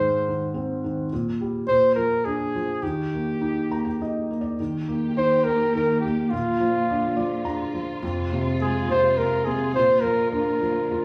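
Flugelhorn and felt-muted upright piano open this sleepy, gentle children's lullaby in Eb major at 105 BPM in a rubato 3/4, the close-miked flugelhorn singing the melody up front with light vibrato over the soft, intimate piano, whose action noise is audible and whose fills arrive at 3.4 and 6.9 seconds, before a dark, bowed string section joins at 4.6 seconds with sustained chords, portamento and a smooth top, all set in a small room with moderate reverb in this excerpt from a longer piece.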